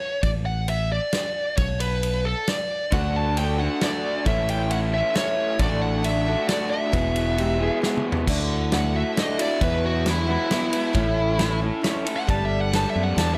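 Jangly and hopeful, this folk rock and heartland rock excerpt moves at 134 BPM in 3/4, with a smooth overdriven lead guitar carrying the melody over round, punchy fingered electric bass and a natural small-room country drum kit, joined at 2.9 seconds by a shimmering octave-doubled twelve-string acoustic and a lo-fi double-tracked garage guitar riff, as a dark, clean electric guitar adds a brief second line from 7.4 seconds, overlapping a drum fill at 7.8 seconds that leads into a lead guitar solo from 8.3 seconds, all in light studio reverb.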